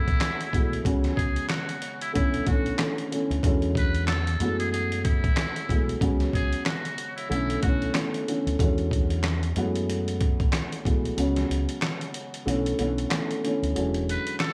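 A small-room ambience frames this moody, reflective boom-bap hip-hop excerpt at 93 BPM, swinging in F# minor over cycling F#m11, C#7sus4, Bm11 and E13 chords. Up front, a compressed, pitched-down sampler-style drum kit with a thumpy kick, medium-tuned snare, hi-hat and handclaps sits beside a woody, boxy upright piano with cassette-tape haze, audible action noise and long sustain, while a round, punchy fingered electric bass anchors the low end. A buzzy, breathy trumpet with a metal mute carries the jazz-style melody with vibrato, scooped notes and tape echo until 7.9 seconds and briefly returns at 14.1 seconds, and the kick drops out from 11.2 seconds.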